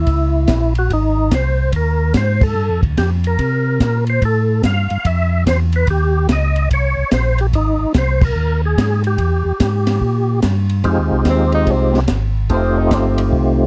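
Late-night and smoky, this brief soul jazz organ trio snippet swings in four as a lightly overdriven, key-clicking tonewheel organ carries the melody over a round, clean organ bass line and a cocktail drum kit with a high-tuned snare, tight kick and gritty sampler colour, the band hitting accents at 2.4 and 8.2 seconds before a mellow, vintage tenor saxophone slips in at 11.3 seconds for a short solo, all in a dark, dry, up-front mix.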